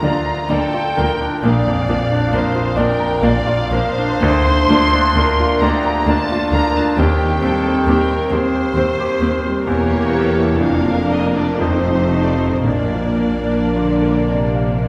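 Classical romantic movement for piano and orchestra in Bb major, a lyrical, lush excerpt in a rubato 3/4 around 54-68 BPM, where a clear concert grand with deep bass and long sustain carries the melody up front alongside veiled con sordino violins. A close second violin line sits beneath, while viola accompaniment and cello and double bass sections hold the dark, muted background. A mellow, distant French horn section adds sustained chords from 1.4 s, very quiet hard-mallet timpani sound a Bb at 12.6 s, and the whole is heard from further back in a reverberant scoring stage as the harmony moves through an Edim7 and F7 to settle on Bb.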